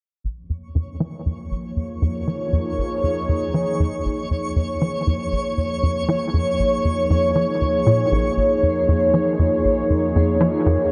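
Ambient, sequencer-driven space music in Bb minor at 118 BPM, expansive and hypnotic, built on a single Bbm chord in this short section cut from a longer piece. A tight, punchy sequencer bass drives a dark, detuned riff with ensemble chorus and analog delay, while a sweeping, airy resonant pad holds sustained chords with chorus, both parts carrying a filter sweep from 0.2 to 8.4 seconds. A twinkling granular texture with an octave-up shimmer fades in high above them through that same stretch, and the whole dreamy mix is soaked in a lush hall reverb with a cassette-tape tint.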